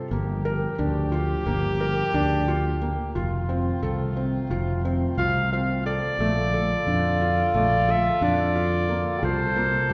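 A woodwind section in the background and a felt-muted upright piano, soft and intimate with audible action noise, open this restless, urgent piece of contemporary chamber music in an uneven 9/8 metre. The woodwinds hold smooth sustained chords, the piano plays arpeggios, a nasal, bright French horn with straight mute carries a second line, and a growly, punchy fretless electric bass sits up front, moving through Gm7, F7, Bbmaj7 and C7sus4. At 5.2 seconds a clear, classical-style clarinet enters with the melody, all set in a recital hall's reverb and heard from further back in the room.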